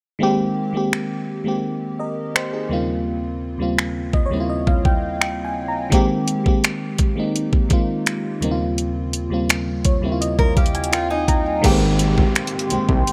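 Dreamy, romantic contemporary R&B at 84 BPM in Ab major, where a lush, mellow FM electric piano with a soft pad layer and chorus plays fills over Abmaj7 and Eb13 chords, backed by an up-front, tape-warm drum kit of knocking kick, hi-hat, finger snaps and crash, with a boxy picked archtop guitar briefly adding delayed arpeggios before a fat, saturated analog bass and an electronic downlifter arrive at 11.6 seconds, followed shortly by a deep, moody ambient pad with sidechain pumping, in this dry, close-sounding fragment of a longer piece.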